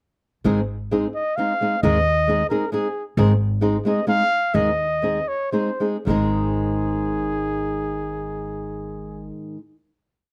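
Romantic and festive, this short mariachi piece in a rubato 3/4 sets a mellow trumpet with light vibrato and a smooth top singing motif-based song phrases up front, over fingerpicked and chop-strummed nylon-string guitar with fresh strings, open chord shapes and a slapback echo, while a woody, thumpy pizzicato upright bass marks root and fifth on the main beats; the music slows from 3.2 seconds into a held final chord at 6.1 seconds, in a dry outdoor sound.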